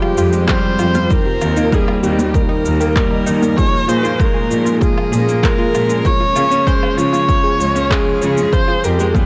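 A dark, warm production with light reverb and a sense of studio ambience frames this hypnotic, melancholic piano and strings electronica excerpt at 97 BPM, moving through Fmadd9, Eb, Bbm7 and Db. An expressive solo viola, dark and bowed with vibrato and portamento, carries the melody up front over a grand piano riff with audible action noise and long sustain, while a clear symphonic cello section holds the bass with light vibrato and sidechain pumping from 0.2 seconds. A punchy, overdriven electronic kick joins at 0.5 seconds beside overdriven woodblock, shaker and handclaps, as a nasal sawtooth pluck plays arpeggios in the background through chorus, phaser, cassette tape, sidechain pumping and digital delay, and a very quiet, cloudy granular pad sustains detuned chords beneath.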